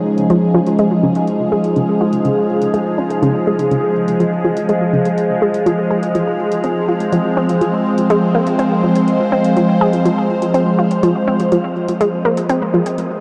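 A swirling, detuned analog pad opens this luminous, cosmic stretch of sequencer-driven space music, holding sustained chords up front through a phaser and chorus. An airy, breathy noise texture, tuned and wind-like, fades in behind it almost at once and sits high in the background in its own reverb. Electronic hi-hats with a metallic edge and congas also fade in gradually, trailing tape echo, while a round, nasal analog pluck plays a bright, wave-folded riff with chorus and tape echo, a filter sweep shaping its tone throughout. The harmony moves from Dbadd9 to Fm at 5.7 seconds, and the whole dark, warm passage floats in a wet, huge ambient reverb with a long, lingering tail. Cut from a longer piece, it stays in one unbroken section for its 13.2 seconds.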